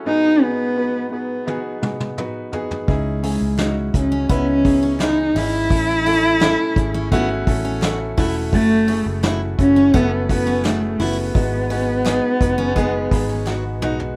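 Driving and earnest, this piano-driven pop piece moves at 85 BPM in a straight 4/4, heard as a cut from a longer piece with a rough home-demo mix and light reverb. A clear, polished baby grand piano with plate reverb carries the accompaniment from the very start, while a dark, woody cello, bowed by one player with vibrato, sits close and up front with the melody from 0.1 seconds. A vintage brush drum kit enters at 1.5 seconds with a fill, its punchy kick and medium-tuned snare sounding mid-forward in a small room with a rolled-off top. At 2.9 seconds a vintage muted fingered electric bass adds a round, foam-muted low end, soon joined by a full-bodied picked steel-string jumbo acoustic guitar riff and a crisp, band-limited group handclap kept very quiet. The harmony cycles through G#m7, C#madd9, A and F#m7 before returning to G#m7, and the piano adds fills around 7.5 and 12.8 seconds as the drums close with a final fill.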